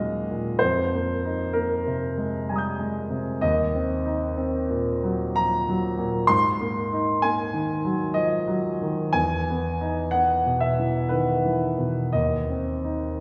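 Classical impressionist solo piano, wistful and nocturnal, moving in a free, rubato three-beat sway with uneven pulses. A single concert grand carries the whole fragment, its tone clear and open with a deep bass, ranging from low Eb2 up to G6 through lush extended harmonies like Ebm11, Ab13 and Emaj7 before settling on a bare Eb5 at 12.1 seconds. A wet scoring-stage reverb places the listener further back in the room, and the passage is cut from a longer piece.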